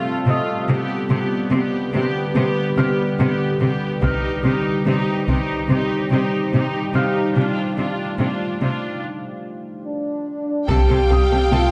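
A brooding, vast hybrid orchestral and electronic film score excerpt at 72 BPM in C dorian, where a deep, moody sawtooth pad with chorus and a felt-muted upright piano drifting through digital delay in the background underpin an intense viola section and a focused, lush cello bass, taiko drums with hard sticks strike at 4.0 seconds, a break begins at 9.0 seconds and a mellow, tight French horn section enters at 9.9 seconds, and at 10.7 seconds a smooth symphonic violin melody, a close studio violin second line, a very quiet distant double bass section and a punchy sub bass with a pitch-drop attack join for the closing Fadd9/C chord, all set in a moderate concert hall reverb.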